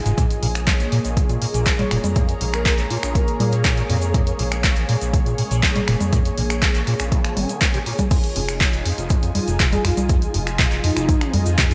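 This acid house excerpt in straight 4/4 feels hypnotic and gritty, built on an overdriven electronic kick that sits up front and a punchy analog drum machine with congas, crash cymbal, finger snaps, handclaps and hi-hat, both carrying the roomy character of a large space. A squelchy, resonant acid bass riff with a filter sweep, phaser, chorus and delay runs alongside a round, deep analog bass that pumps against the kick, while a grainy egg shaker ticks in the background. Overhead, a thick, detuned sawtooth unison pad holds sustained chords from Bbm7, pumping and shimmering with chorus and phaser, and a cloudy, evolving granular pad blurs softly behind it. A breathy, flute-like lead with a vintage warble and vibrato drifts in from 1.8 to 3.5 seconds and returns at 9.7 seconds, tucked in the background under chorus and digital delay. At 8.1 seconds the music drops into an Fm7 passage, all wrapped in a lush hall reverb and a bright, 1980s-style digital sheen.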